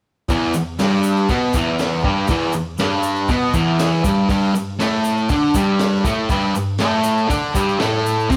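Garage rock with a raw, gritty mood, this short excerpt cut from a longer piece moves at 120 BPM in a straight 4/4 in E minor. A bright, distorted fuzz guitar sits up front, picking a double-tracked riff that spans E2 to D4 over an Em chord that gives way to G5 at 4.3 seconds. Beneath it, a crunchy breakbeat drum kit plays throughout, its saturated sound darkened by a rolled-off top, with dark cymbals including a crash, a high-tuned snare, a punchy kick and hi-hat. An egg shaker adds a grainy, bright texture in the background. Light reverb gives the feel of a band playing live together in one room.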